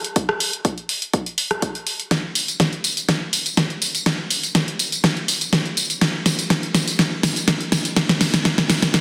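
A deep house drum kit opens this driving, bittersweet house passage, placing hi-hat, rim click, snare drum and tambourine up front, with soft clipping giving the fat snare its edge. An electronic kick drum joins at 0.2 seconds, a deep, layered thump that has been high-pass filtered and sits lower in the balance than the kit. Both drum parts carry a tape-warmed, produced character, as if re-recorded in a small room, and the kick's room sound is filtered as well. The whole passage works as a build-up in straight 4/4, with a drum fill running from 2.1 seconds to the end of the cut. A wet digital room reverb surrounds the drums, and the mix is finished with a dense, heavily limited modern master.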